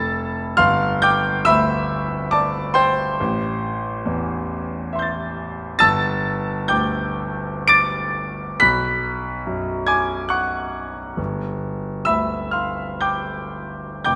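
In a 3/4 with a rubato feel, this short excerpt from a longer impressionist solo piano piece drifts between 57 and 72 BPM, luminous and serene in mood. A clear concert grand piano, open and up front with a deep bass, spans from F1 to D7 as it moves through colored harmonies from Fmaj7 and G9 to Am7, Bm6 and G7. A moderate reverb, like a scoring stage, gives the piano an airy, spacious halo.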